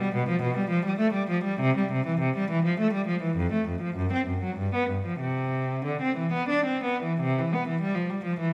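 A rich, bowed cello stands alone and up front, a single player drawing a smooth, even line with vibrato across a range from F2 to D4. This is a classical, baroque-style suite movement in C major and 3/4, its radiant, flowing mood shaped by a rubato feel that lets the tempo drift between 87 and 106 BPM. The instrument sounds from the very start through 8.5 seconds, and a moderate reverb with the air of a scoring stage gives each note a gentle halo. A new section begins at 7.2 seconds, shortly before this brief cut from a longer piece breaks off.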